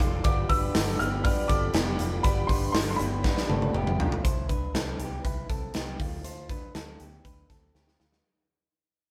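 Captured with light reverb, this cut from a longer piece sounds like a band playing live in one room. It is breezy, nostalgic jangly indie pop in a straight 4/4 at 120 BPM, tuned to A4 = 443 Hz, moving from Dm7 to Cmaj7 and back to Dm7. A big, up-front acoustic rock kit with a punchy kick and medium-tuned snare drives the groove across hi-hat, snare and toms, and adds fills before the change and at the close. A dark, round, foam-muted fingered electric bass and a slightly broken-up, compressed electric guitar picking arpeggios through a small old amp run throughout. In the first half, a boxy, woody twelve-string acoustic with old strings shimmers in octave-doubled picking in the background. A worn, intimate, slightly detuned upright piano carries the high melody with audible action noise, while a lush, very quiet symphonic string section holds smooth bowed chords with vibrato until the fade-out begins at 4.2 seconds.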